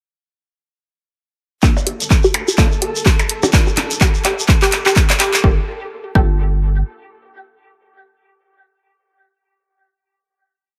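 A hypnotic, quirky minimal techno piece at 126 BPM in G minor with a swung 16th-note feel opens at 1.6 s. A punchy four-on-the-floor kick and an analog drum machine of closed hats and claps sit up front, joined by a mellow hand-played shekere, a thick saturated sub bass in a dotted rhythm, and a squelchy sawtooth blip pluck whose 5-step loop drifts against the bar through phaser, pumping and dub echo. Clicky percussion blips in cross rhythm enter at 1.8 s, and in the background, sparse detuned dub chord stabs moving one shape in parallel and a flickering granular high note arriving at 2.0 s fill out the build, drum fill and filter sweep until 5.4 s. After that, the kick and pluck drop out at 6.3 s and the sub bass at 6.8 s, while the stabs ring out a final Gm7 until 9.8 s.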